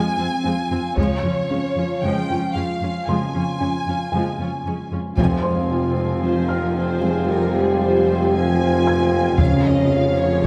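Opening on an expressive, portamento-laden studio violin melody over lush bowed violas, a hollow chorused pad, a ringing harp-like synth pluck and a boxy felt-muted upright piano with delay, this tense, relentless hybrid orchestral and electronic film cue in F minor at 114 BPM brings in a dark cello bass at 0.2 s and close, dry taiko hits at 1.0 s, then thickens with a band accent at 5.2 s as mellow French horns, very quiet clear trombones, woody double basses and a distant, roomy tuba join, before a focused second violin line enters, set in a wet scoring-stage reverb.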